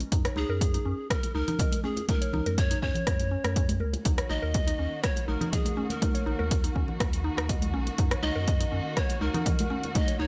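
Bathed in studio reverb, this recording has an earthy, warm glow, with a punchy, overdriven electronic kick drum placed up front. It is an afro house excerpt at 122 BPM in a straight 4/4, tuned to A4 = 436 Hz, moving from Gb6 to Ebm and back. A round sine sub bass pumps with sidechain compression beneath a layered, overdriven deep house kit of hi-hat and rim click, while bright, thin-skinned acoustic congas bring a small-room character. A woody, mellow FM synth pluck spins arpeggios through chorus, sidechain pumping and dub echo, and a breathy bamboo pan flute carries the melody, its chiff and vibrato close-miked and trailed by dub echo. At 4.1 s a lush bowed string section enters with sustained chords, smooth on top, gliding with portamento and pumping with the sidechain.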